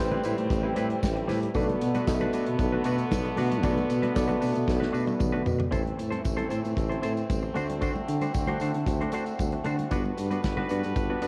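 A dry home cassette recording of a sultry, danceable disco excerpt, where a mellow tuba carries the bass with light vibrato beneath a stopped, nasal muted French horn section holding sustained chords, a clean semi-hollow electric guitar with spring reverb and a worn, slightly out-of-tune tine electric piano that drops out at 5.7 s, over a punchy modern studio drum kit with a fill from 4.7 to 5.7 s, close damped congas and a faint jingly tambourine.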